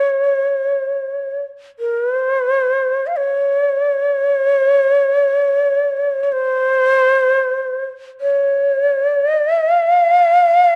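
A breathy, end-blown bamboo shakuhachi plays alone and up front in free time through this calm, austere fragment of Japanese traditional chamber music, its tongued notes, chiff and vibrato ranging from C5 to F5 at a tuning of A4 = 438 Hz, set in a moderate spring reverb and colored by the worn, warbling pitch drift of old cassette tape across its 10.8 seconds.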